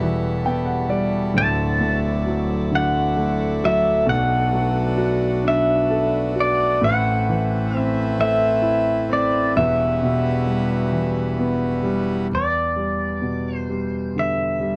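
An acoustic folk-pop ballad in E minor, this intimate, melancholic excerpt moves at a slow 44 BPM in a straight 6/8, with an up-front concert grand piano giving smooth, vintage accompaniment with deep bass and audible action noise while a reedy, breathing hand-pumped harmonium holds mellow sustained chords until 12.3 seconds. From 1.4 seconds a clean, twangy electric pedal steel guitar carries the melody between D5 and A5, played with fingerpicks and slide, compressed and up front with volume swells. The harmony drifts through Emadd9, Dadd9, Bm7 and Amadd9 before settling on Em7, all captured in a dry, close 1970s-style studio sound with small room ambience.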